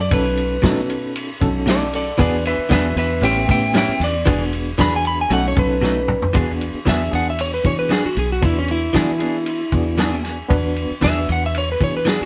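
A band playing live in one room, caught with moderate studio reverb, opens this laid-back, soulful straight-eighth soul blues in E mixolydian at 116 BPM, cut from a longer piece. A slightly broken-up electric slide guitar, played with fingerpicks and sitting up front, solos throughout over a B7, E7 and A7 progression. It is backed by a round, foam-muted fingered bass, a soul drum kit with a fat snare and dark cymbals, and bright, clean picked stabs from a direct-recorded electric guitar entering at 0.6 seconds. A barky, overdriven reed electric piano with fast tremolo adds accompaniment, with a drum fill at 5.8 seconds and an electric piano fill at 9.5 seconds.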